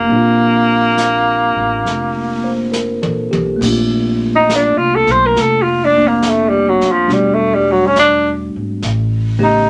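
Swung eighths in 4/4 carry this romantic, intimate jazz ballad fragment, where a breathy tenor saxophone sits up front with subtone, vibrato and scooped notes, moving into a solo at 3.6 s over a bell-like, clean tine electric piano, a woody pizzicato upright bass and a brushed drum kit with dark cymbals and a boomy kick that enters at 0.1 s and plays a fill from 2.7 s, inside a moderate studio ambience.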